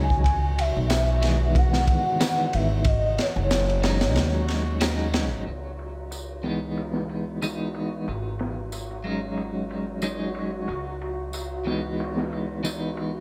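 A lightly swung 4/4 breakbeat of crunchy, saturated kick, high-tuned snare and dark ride cymbal, filtered to a rolled-off top, drives this dark, smoky trip hop excerpt alongside a small-room tambourine, a woody, thumpy pizzicato upright bass and a bright, compressed clean electric guitar with tremolo and tape echo moving between C#m7 and G#7sus4, while a reversed, detuned granular texture swells dreamily in the background and a breathy, gliding sine lead with chorus, vibrato and cassette-tape echo sings only until 4.5 seconds.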